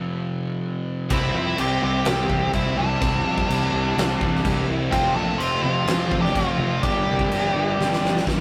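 Driving and menacing, this hard rock excerpt in straight 4/4 opens with a sludgy distorted guitar riff alone before the full band crashes in at 1.1 seconds: a huge arena drum kit with a fat snare and boomy kick, a round, punchy fuzz bass, and very quiet layers of double-tracked overdriven guitar and scooped high-gain guitar. Up front, a nasal lead guitar with a parked wah carries the melody while an octave-fuzz lead guitar traces a second line in the background. A drum fill at 7.8 seconds caps the passage, all set in a rough rehearsal-room recording with a moderate stone room reverb.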